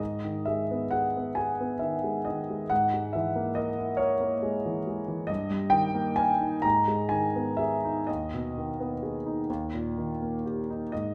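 Classical romantic nocturne for solo piano, cut from a longer piece, wistful and yearning in mood and set in G# minor. The tempo is slow, around 41-47 BPM counted in dotted quarters, in 12/8 with a freely pushed and pulled rubato. A concert grand carries everything alone across the full 11.1 seconds, spanning D#2 to A#5, its tone warm, intimate and natural, with a deep bass and audible action noise that place the listener close to the instrument. The harmony moves from G# minor through a half-diminished chord over a G# bass, arrives on D# over G around 5.3 seconds, and settles back toward G# minor before resting on D#. The piano sits up front within a wet recital-hall reverb, giving the playing a gently blooming church or concert-hall ambience.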